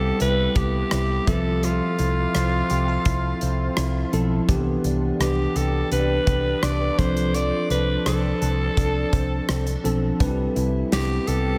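Uplifting and nostalgic, this short 1980s-style pop excerpt moves at 84 BPM in a straight 4/4, with a raspy, gritty alto saxophone carrying the melody up front with scooped notes and light vibrato. A bell-like tine electric piano with subtle chorus plays the accompaniment, while a bright, picked, direct-recorded guitar with ensemble chorus plays a riff in the background over a dark, round hollow-body bass. The chords move from Cmaj7 through Fmaj7/C, Em7/C and Dm7/C before returning to Cmaj7. A polished, airy studio kit with a punchy kick, hi-hat, rim click and snare enters at 0.2 seconds, and a cathedral reverb soaks the whole mix in a dreamy haze.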